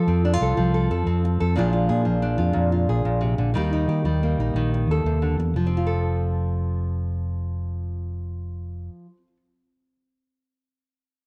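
In a 12/8 at 120 dotted-quarter beats per minute with a straight feel, this danceable, carefree highlife guitar band passage is cut from a longer piece in F mixolydian, tuned to A4 = 439 Hz. A fingerpicked nylon-string guitar carries the accompaniment with a bright, full-bodied, deep classical tone. Beneath it, a fingered electric bass sits up front with a dark, round, amped sound. The harmony moves from F to Bb7 and Eb, then returns to F as a new section opens at 5.5 seconds. Light reverb and a small-room ambience frame the pair until the bass drops out at 8.9 seconds and the guitar closes alone at 9.4 seconds.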